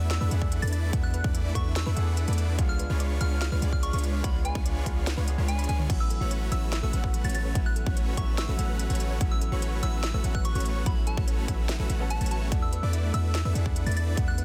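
Playful and euphoric, this future bass excerpt moves at 145 BPM in 4/4 with a half-time feel, centred in A major. Huge, detuned supersaw chords carry the riff through the whole passage, pumping against an up-front, punchy electronic kick with overdrive and a deep, boomy 808-style bass with a sine body and a noise layer. Above them a soft, pure FM synth bell sings the melody high in its range, coloured by chorus, phaser and digital delay, while a clear concert grand piano sits in the background with delay of its own. A very quiet, round, tine-like synth pluck weaves arpeggios from 0.1 seconds, and a trap kit with a sharp snare, crisp hats, crash and toms adds a fill at 5.7 seconds. The harmony moves from E7sus4 to C#7b9 and reaches A69 at 5.9 seconds before returning to E7sus4 at 12.5 seconds, all within a dense, heavily limited modern mix bathed in digital ambience.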